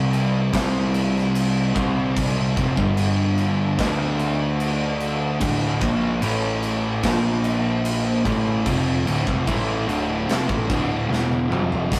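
A dark, double-tracked fuzz guitar riff and a growly, overdriven picked bass open this brooding, heavy stoner and doom metal passage in D minor at 74 BPM, joined at 0.1 seconds by an up-front acoustic rock kit with a punchy kick, medium-tuned snare, bright crash cymbals and toms that closes with a drum fill at 11.1 seconds, all captured in a rough rehearsal-room recording with light reverb and warm saturation, cut from a longer piece.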